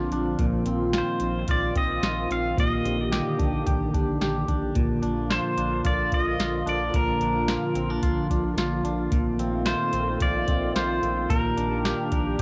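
Lightly reverberant and softened by home cassette tape, this ethereal, blissful dream pop fragment in Bb major drifts at 110 BPM over a soft vintage rhythm box with a deep kick, crisp snare and metallic hats, a round, dark analog bass holding Bb1, a swirling, airy phased pad of detuned sawtooth chords, and twangy, scooped clean electric guitar arpeggios through chorus and analog delay, while a bright, compressed pedal steel guitar slides in at 1.0 s with an up-front melody.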